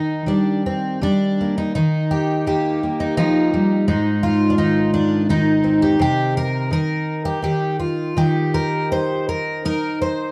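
In a rubato 3/4 lilt at around 83 BPM, this haunting, melancholic folk fragment features a solo fingerpicked twelve-string acoustic guitar, moving through Eb, Ab and C minor before settling back on Eb across its 10.3 seconds. The jumbo-bodied instrument sits up front, its fresh strings giving an octave-doubled, shimmering ring that spans Ab2 to C5. A moderate studio reverb and dark, warm production frame the guitar, which is tuned slightly low to A4 = 439 Hz.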